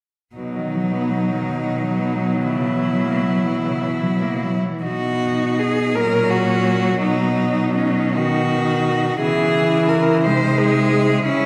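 Swaying in a flexible 6/8 with a rubato feel, this lyrical classical passage for four cellos unfolds slowly and tenderly, a short excerpt lifted from a longer work. A bright, focused cello carries the melody close and up front, its vibrato singing over the ensemble. Beneath it, a second cello sits more distant on an inner line, a third adds an intense, smooth-topped accompaniment, and a fourth holds the bass with a smooth, even tone. All four are bowed, each by a single player, and all play with vibrato throughout, the lower three sharing a rich tone. The opening phrase gives way to a new section at 4.8 seconds, where the harmony moves from B through F#/A# and back before turning to C#m and G#/B#. A lush church reverb with a long tail surrounds the group, lending the music a spacious, warm glow.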